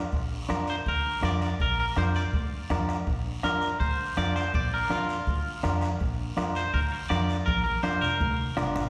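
Opening with a picked, compressed clean electric guitar and woody pizzicato upright bass, joined at once by a distant soft-beater bombo, thick-skinned congas in the background and a raspy guiro, this danceable, festive cumbia excerpt brings in an up-front twangy electric guitar melody with spring reverb at 0.7 seconds, all bathed in the long, wet reverb of a church or concert hall, before a drum fill arrives at 7.5 seconds.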